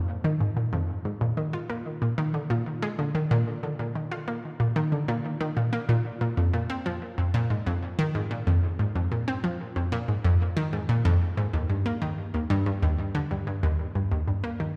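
A straight 4/4 pulse at 93 BPM carries this mysterious, hypnotic ambient fragment in F dorian, where a lone analog pluck, detuned and bright with a round, sawtooth-and-square bite, fast attack, short decay and a noise layer, sits up front under chorus and analog delay, ranging from Eb2 to F4 for 14.7 seconds inside a wet, echo-heavy chamber reverb.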